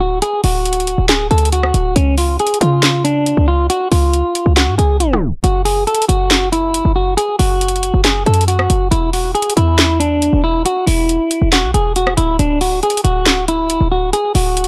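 Trap-style hip hop in a brooding, dark half-time groove, cut from a longer piece, with a clean, fingered electric guitar carrying the melody through tape echo over a punchy, tight 808-style bass with a noise layer and a fast, decaying attack. A trap drum kit enters at 0.2 seconds with a sharp snare, metallic hi-hats, handclaps and rim clicks, all three parts sitting up front in a dry, gritty mix marked by transformer saturation and cassette tape character. A tape stop at 5.0 seconds breaks the opening, and the chords move from D to C# before dropping away at 5.4 seconds, then returning on E5 and D.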